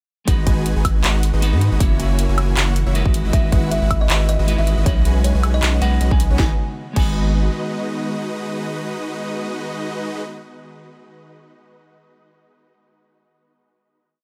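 A whole future bass piece opens at 0.3 s straight into the drop, with huge, detuned supersaw chords in a dotted rhythm, a deep, saturated sub bass tied to the chord rhythm, and a punchy, overdriven kick in a half-time feel, with the supersaws and bass pumping against it. A trap kit adds a sharp snare, handclaps, metallic hats with rolls, a high woodblock and crashes, while a clean semi-hollow electric guitar sits in the background with held chords and syncopated pushes, pumping and trailed by dub echo like the supersaws. A very quiet, ethereal pad with slow attack and ensemble chorus drifts underneath, and at 3.3 s a woody, band-limited kalimba arrives with a short repeating riff, pumping and repeated by delay. The drums drop away around 7.1 s and the bass by 7.5 s, leaving the guitar, supersaws, pad and kalimba to hold a final chord. The mood is emotional and bittersweet, moving through rich seventh and extended chords over a swung half-time groove, in a dry sound.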